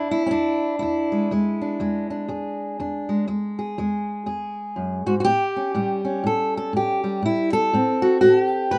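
A moderate booth ambience frames this short cut from a longer acoustic country blues piece, soulful and rollicking at 122 BPM with a swung 4/4 feel in E mixolydian. A warm, boxy fingerpicked steel-string acoustic guitar sits up front and plays alone throughout, ranging from E2 to B4 over E7, then moving to A7 at 5.3 seconds and Am7 at 7.2 seconds.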